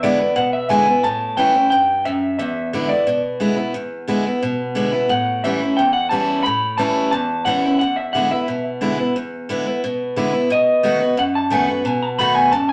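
A wet studio reverb gives this recording a roomy sheen, with both guitars sitting up front. It is an upbeat, rollicking rock cut from a longer piece, moving at a brisk 178 BPM in a straight 4/4 feel and set in E mixolydian. An electric guitar through a small old amp carries the melody between D5 and B5, its tone bright, twangy and slightly broken-up. Underneath, a picked steel-string acoustic guitar on fresh strings supplies a full-bodied accompaniment from E2 to F#4, with an audible finger squeak. The changes move through E7 and A7, then close on B7 at 10.5 seconds, with both guitars playing across the full 12.7 seconds.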